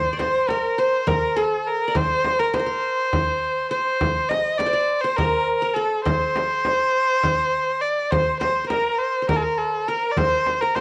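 A home cassette recording bathed in a wet studio reverb carries this passionate, stately excerpt of a Turkish makam ensemble in 7/8 at 204 eighth-note beats per minute, where an up-front bowed erhu sings the earthy melody with light vibrato and portamento over a bright-edged, plectrum-plucked qanun second line on triple strings, joined at 0.2 s by a deep, large frame drum and a small, high clay-shell darbuka set in the background.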